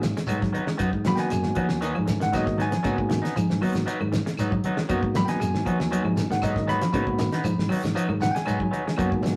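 Funky and hypnotic, this afrobeat excerpt sits on a single G#m7 chord, with a bell-like tine electric piano soloing throughout over a clean, hollow-body semi-hollow guitar picking background arpeggios and a slightly broken-up, twangy guitar through a small old amp adding stabs. A fingered electric bass sounds warm and direct beneath a dry, damped 70s drum kit with a fat snare, tight kick and hi-hat. Very quiet, ringing congas, a grainy shekere and woody claves, which enter at 0.3 s, fill out the percussion in a rough rehearsal-room recording with moderate studio reverb.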